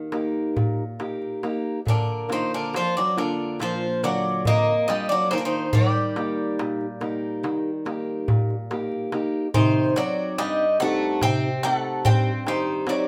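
A metallic, up-front bouzouki melody over a second, lower bouzouki line and a dark, woody, boxy picked archtop guitar opens this wistful, reflective Greek folk passage in 9/8 at 141 BPM, joined at 0.1 s by a crisp, close, dry metal-shelled darbuka, all in a moderate studio reverb as the tempo speeds up and the harmony moves from Eb and Bb to a Cm turn at 9.6 s in this cut from a longer piece.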